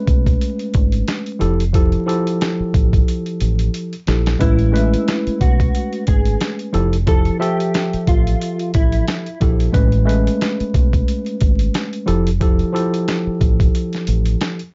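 Swung sixteenths drive this nostalgic boom-bap hip-hop groove, where a gritty, pitched-down sampler kit with a thumpy kick and a round, punchy dub bass sit beneath a worn, slightly out-of-tune tine electric piano with a cassette-tape character, while a clean, fingered electric guitar with ensemble chorus and delay carries a melody from 4.4 to 9.0 s, inside a dark, dry mix dusted with vinyl crackle.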